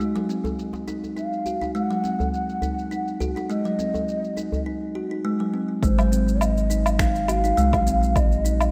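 A woody, ringing kalimba arpeggio with digital delay and overdriven, filtered electronic shaker, woodblock and finger snaps open this peaceful, lightly swung organic downtempo excerpt, soon joined by a tight, cracking djembe, before a breathy, hollow ney melody with vibrato and delay enters at 1.2 s and, at 5.8 s, a round, dark analog bass with sidechain pumping and a punchy, overdriven electronic kick arrive, the whole set in a lush hall reverb within a rough home-demo mix.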